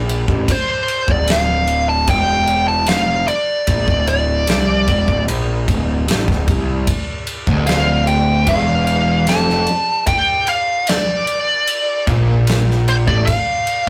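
A dark, fuzz-soaked lead guitar carries the melody from 0.5 seconds, its distorted, picked line pushed through wah and sitting up front in a high register. This is heavy, brooding stoner and doom metal at a slow 75 BPM in straight 4/4, holding on a D minor chord throughout. Underneath, a bright, growly picked bass with overdrive grinds low from the start, while a big acoustic rock kit with a punchy kick, medium-tuned snare and ride cymbal gives a polished, airy pulse. At 7.5 seconds a double-tracked, compressed rhythm guitar joins with a warm distorted riff in a low range, dropping out at 13.3 seconds. The rough rehearsal-room recording adds saturation and a moderate small-room reverb, and the fragment is cut from a longer piece.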